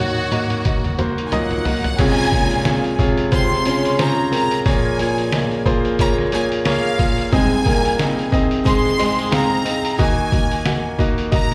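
Hopeful and anthemic, this piano-driven pop passage moves at 90 BPM in 4/4 with a gentle sixteenth-note swing in Db major, cut from a longer piece and heard as a live gig through a club's PA with light reverb. A grand piano sits up front as the accompaniment, intimate and natural, with audible action noise and a slapback echo. A lush, bowed violin section carries the melody across the whole 11.5 seconds, close and smooth with vibrato, while a mellow French horn section plays a second line with light vibrato and its own slapback echo until 9.6 seconds. An airy, breathy pad with a detuned, chorused texture holds very quiet sustained chords only through the opening 2.0 seconds. The lo-fi sampler-style drum kit enters at 0.3 seconds with a fill, sounding compressed, pitched down and muffled, with a thumpy kick, fat snare and tape-warm character as if re-recorded in a small room. The harmony moves from Ebm through Dbmaj7, Bbm7 and Ab/C before returning to Ebm.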